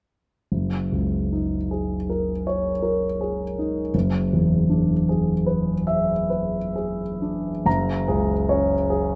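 Impressionist classical solo piano, this short excerpt carries a luminous, hazy mood in 9/8 metre, shaped with free rubato. A grand piano plays alone from 0.5 to 9.2 seconds, spanning the deep bass up into the upper treble. Its tone is clear, polished and intimate, sitting up front and present, with the mechanical noise of the action audible beneath the notes. Lush extended harmonies drift from Gb69 to E9/F#, and at 7.7 seconds the music moves into a new section that settles on Gbadd9. A wet stone room reverb surrounds the instrument, lending the sustained chords a gentle bloom that suits the dreamy atmosphere.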